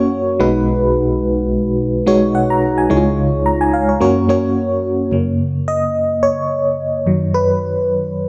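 Romantic and nostalgic, this fragment of a longer pop piece moves at 108 BPM in 4/4 with a light sixteenth-note swing in F# major, carried by a mellow, up-front FM electric piano whose fast-attack, decaying tones carry a noise layer, tremolo and phaser, ranging from B1 to A#5 over chords such as B6, C#add9, F# and B/F#, and stepping into a solo from 5.1 s, bathed in a lush hall reverb.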